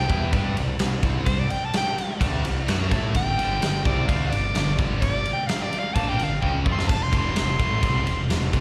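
A straight 4/4 pulse at 128 BPM drives this powerful, energetic hard rock excerpt, where a huge arena drum kit with a fat snare and punchy kick sits up front from 0.1 s and fires off a fill at 6.4 s, a growling overdriven electric bass adds weight, a bright overdriven semi-hollow guitar and a scooped high-gain guitar play riffs in the background, and an edgy, forceful soprano saxophone takes a vibrato-laden pop-style solo with slapback and tape echo over C5, Gsus2 and F5 chords, the mix heard as a live gig through the venue's PA with small room ambience and recital hall reverb.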